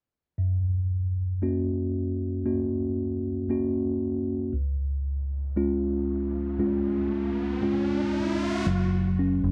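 A mellow tine electric piano carries this short pop passage, its clean, speaker-colored tone sitting up front as it plays the accompaniment from 0.4 seconds onward. The mood is tender and emotional, set in a straight, unhurried 4/4, with the harmony moving from F# to C# and back to F#. At 6.3 seconds a quiet electronic riser enters alongside the keys and rises until 8.7 seconds. A vintage muted fingered electric bass arrives at that moment, dark, round and punchy, adding a low F# under the piano until the fragment ends at 9.5 seconds. The sound is dry and close, in the manner of a 1970s studio recording, with little reverb around the parts.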